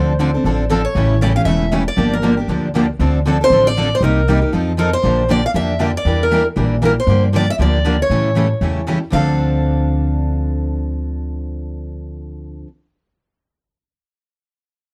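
A brisk swung pulse in four carries this short, fiery and bittersweet clip of acoustic string swing in the manouche tradition. Up front, a picked steel-string guitar with a boxy parlour body and fresh strings takes the melody in a high register, its finger squeak plainly audible. Two more picked steel-string guitars play the accompaniment through the low and middle range: a full-bodied jumbo, and a twin of the lead instrument. A pizzicato upright bass on gut strings also sits up front, with a woody, dark, thumpy tone. The harmony moves from Dm7 through A7 and Gm7, shifts to Bb69 and Em7b5 around 5.0 seconds, and comes back to Dm7 at 9.1 seconds. The sound is a dry, close 1970s-style studio recording with light reverb, and all four parts play from the start until the cut.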